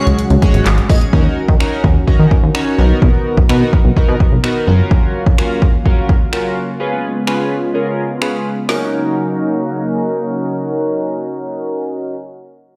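Energetic and driving, this dance-pop passage runs at 127 BPM in a straight 4/4, sitting in Eb minor with tuning a touch sharp of standard. It opens on a drop, where a soft, airy lead with vibrato and digital delay floats briefly in the background before giving way, as a warm, detuned pad holds mellow sustained chords beneath a glossy, nasal polysynth with a retro pulse-width shimmer. Up front, a punchy deep house kit of kick, woody snare, dark hats, handclaps and finger snaps drives alongside a funky, plucky analog bass whose ring-modulated tone pumps with sidechain compression until it drops out at 4.8 seconds. A long filter sweep colours the middle stretch as the harmony moves through Ebm7, Bmaj7, Gbmaj7 and Db7, with the kick muted from 7.7 seconds and the drums falling away at 8.8 seconds, leaving the pad and polysynth to land back on Ebm7. The whole mix carries a stony, reverberant room sound, as if played on a big system in a bare hall.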